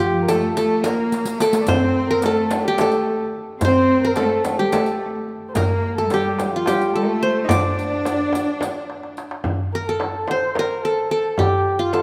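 In a straight 7/8 at 216 BPM counted in eighths, this soulful, hypnotic Turkish makam ensemble excerpt puts a plectrum-plucked, triple-stringed qanun melody up front beside a rich, smooth bowed cello section, while a dark, nasal kamancheh with vibrato and portamento sits in the background, and a clay-shell darbuka played with soft hands, a close, dry riq with bright jingles and a deep, vintage frame drum carry the percussion, with drum fills at 1.1 and 8.9 seconds and the cellos and riq dropping out at 9.2 seconds shortly before a new section begins, the ensemble set in a moderate concert hall reverb.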